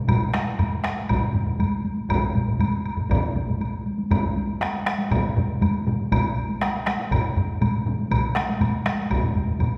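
A hall's lingering reverberation surrounds this short cut from a longer piece of Japanese traditional taiko drumming, lending the ensemble a ceremonial grandeur. Four taiko parts play together in a straight 4/4 pulse, sounding powerful from the first moment. One is struck with hard sticks in a small room, while the others use heavy sticks: one sits close and dry, another in a small room, and a fourth sounds distant in a large space, dropping out at 9.2 seconds while the rest carry on to 9.7 seconds. A woodblock adds a woody, faraway click beneath the drums, set lower in the mix. The layered placements give the ensemble a sense of depth, from near and dry to remote and echoing.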